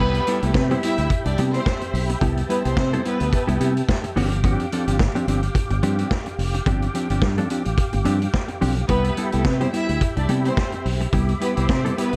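Danceable and celebratory, this disco excerpt grooves at 108 BPM in C major with a light 16th-note swing, moving from Cmaj7 to G7sus4 and back. A round, dark fingered bass sits up front beside a vintage acoustic kit of tight kick, medium-tuned snare and hi-hat entering at 0.1 seconds, while a clean, compressed electric guitar with spring reverb accompanies throughout and a soft, flute-like tonewheel organ holds sustained chords through chorus vibrato and a slow rotary speaker. A lush bowed string section adds an expressive second line with vibrato and portamento from the start until 3.6 seconds, then returns at 8.9 seconds, all within a dry, dark production.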